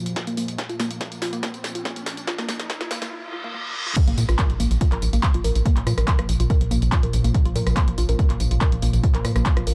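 Relentless and industrial, this driving peak-time techno excerpt runs at 142 BPM in a straight 4/4. It opens with a build-up under a filter sweep, where a deep, detuned sawtooth pad holds a drone between Bb2 and F3 with chorus, built-in reverb and sidechain pumping, while a woody, wave-folded pluck carries a riff from Bb3 to Bb4 through tube saturation and delay. A punchy, tape-toned analog drum machine plays a fill of snare, handclaps, hi-hat, rim click, tambourine and crash, re-recorded in a small room, with the electronic kick sitting loudest beneath it. Background effects add a riser and a reverse cymbal before the drop at 4.0 seconds, marked by an impact. From 4.1 seconds a tight, saturated sequencer bass built from sawtooth and square waves with ring modulation drives between Bb1 and Bb2, pumping with sidechain in a dark mix.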